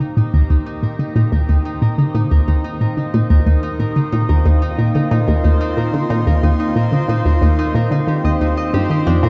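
A squelchy, resonant blip pluck riff sits up front with chorus, delay and a filter sweep, while a bright, ringing concert harp fades in with delayed arpeggios, a swirling phased analog pad fades in beneath with sustained, mellow chords, and a bubbling stepped-filter texture fades in deep in the background, all set in a lush hall reverb that gives this brief slice of cosmic, luminous, sequencer-driven space music its ambient glow.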